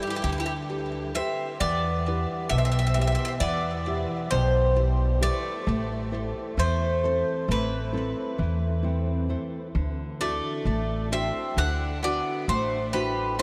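Two bouzoukis and a nylon-string guitar open this short cut from a longer Greek folk piece together, with the upright bass joining at 0.2 seconds. The mood is tender and calm, moving in 9/8 at 132 beats per minute with a straight feel. The lead bouzouki carries the melody up front, its picked double strings sounding metallic yet warm, with some octave doubling and a touch of delay. A second bouzouki plays a lower line with a brighter tone. The dark, full-bodied guitar is fingerpicked with a deep classical character, while the pizzicato bass gives a woody, thumpy pulse from its gut strings, and both sit up front. The harmony moves from Gadd9 through Em and Am to Dadd9, all within a dreamy mix soaked in a huge ambient reverb.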